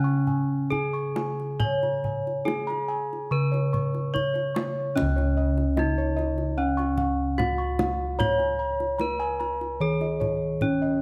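Ceremonial and shimmering, this short passage of Javanese gamelan, cut from a longer piece, moves at an unhurried 66-74 BPM in a straight 4/4, set in a Db slendro tuning. A bright, ringing bronze metallophone struck with a horn mallet carries the melody up front, while a set of bossed gongs played with padded beaters adds mellow, soft arpeggios above it. A second set of bossed gongs, round and beating with a brighter edge, holds the bass and spans down to the lowest register. The kendang enters at 0.3 seconds with tight, soft-handed strokes that carry a small-room character of their own. Close, detailed microphones catch the metallic bronze tone of the ensemble, and a moderate recital hall reverb lets the notes bloom as the music passes from its opening section into a second one at 5.0 seconds.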